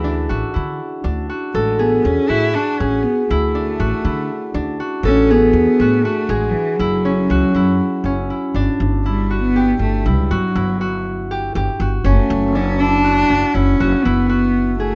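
Pensive yet urgent, this excerpt of contemporary chamber music moves in 7/8 at 240 BPM counted in eighths, with a straight feel and tuning set to A4 = 441 Hz. A single player's dark, close cello carries the bowed melody with vibrato, while an up-front concert harp rings out bright fingerpicked arpeggios and a thumpy pizzicato upright bass on gut strings adds woody low notes. Light reverb surrounds the trio, and at 8.6 seconds the music shifts into a new section as the harmony moves from Dsus2 and F#5 toward G5 and Dmaj7/F#.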